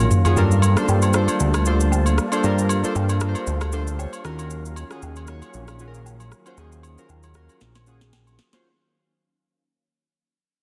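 Deep and hypnotic, this brief amapiano excerpt at 116 BPM with a lightly swung 16th feel fades out throughout as a fat, detuned sawtooth bass sits up front under round, chorused analog keys that add a short fill near 3.7 seconds, silky string-machine chords treated with phaser and ensemble chorus, an electronic R&B kit with a sharp snare, rim clicks, shaker and toms, playing drum fills at the start and from 7.6 seconds, plus acoustic agogo bells, woodblock, maracas and group handclaps, all moving from Gm9 to Ebm9 in light reverb and digital ambience with a dense, heavily limited master.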